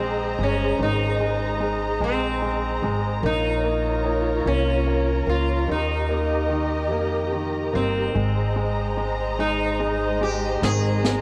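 A heartfelt, romantic pop ballad in a gentle six-eight lilt, this short cut from a longer piece opens on an Abadd9 chord and moves through Bbm and Eb before returning home. A buzzing, plectrum-plucked sitar carries the melody up front, its sympathetic strings adding a shimmering halo. Beneath it, a bright baby grand piano with a brilliant, short-sustained touch supplies the accompaniment, while a lush string section holds sustained chords with expressive vibrato and portamento. A woody pizzicato upright bass anchors the low end. At 10.6 seconds a high-tuned snare played with brushes enters for a brief fill, and the whole has the light reverb, small-room ambience and cassette character of a home recording.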